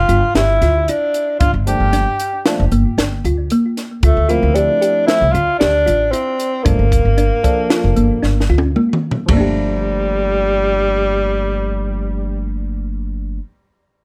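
A mellow tenor saxophone with light vibrato and tape echo carries the melody over woody pizzicato upright bass in this brooding, intricate progressive instrumental in 5/4 at 114 BPM in G dorian, joined by a round, gentle synth pluck playing chorused arpeggios, a dry cocktail drum kit with dark cymbals, a high-tuned snare and a punchy kick that plays a fill from 8.2 seconds before stopping at 9.4 seconds, and a barky, lightly overdriven electric piano through a combo amp with phaser entering at 1.7 seconds, set in light reverb over chords moving from Gm9 to Dm7 and Gm7.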